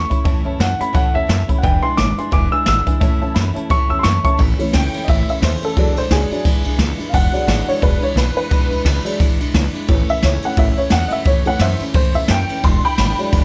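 This retro, rollicking rockabilly excerpt opens with a woody upright piano carrying the melody high in its range, over a jangly, detuned honky-tonk upright piano, a bright picked steel-string acoustic guitar and a growly, thumpy pizzicato upright bass. A jazz drum kit played with brushes joins almost at once, sitting up front with dark cymbals, a boomy kick and a medium-tuned snare alongside hi-hat and ride. The tempo is a brisk 175 BPM in 4/4 with a swung eighth-note feel, in A major, with the harmony moving between A and E7. At 4.4 seconds the melody piano drops out and the honky-tonk piano takes a solo that runs until the clip ends at 13.4 seconds, its vintage tone taking centre stage. Light reverb surrounds the parts, and the drums carry a natural small-room character.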